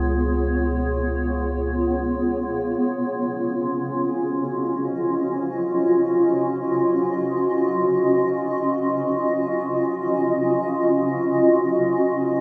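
Soaked in a huge, dreamy reverb with a hint of small-room air, this melancholic yet serene ambient fragment drifts in free time as an up-front granular cloud pad, blurred and wave-folded with built-in reverb and analog chorus, holds slow-blooming sustained chords throughout while a round, deep analog bass sits beneath it only until 2.8 s, when the harmony shifts from Db7 to Ebm9.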